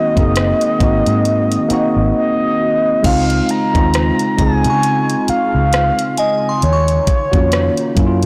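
A mellow, horn-like synth lead opens this sensual, late-night contemporary R&B piece, carrying the melody with a round, warbling, vintage tone colored by chorus, vibrato and tape echo, over a worn, slightly out-of-tune tine electric piano and a hollow, flute-like pad that hangs in the background under ensemble chorus. Moments later a dark, foam-muted fingered electric bass and a produced electronic drum kit arrive, the kit's knocking kick, hi-hat, rim click and crash sitting up front at a slow 67 BPM with a swung sixteenth-note feel. After a silent gap from 2.1 to 3.0 seconds, the harmony moves from Ab7 to Dbmaj7 and later Ebm7, and a glassy, crystalline FM bell adds bright decaying texture until 7.5 seconds. The whole mix carries light digital reverb, yet the recording is blown-out and overdriven, giving the smooth groove a gritty, saturated edge.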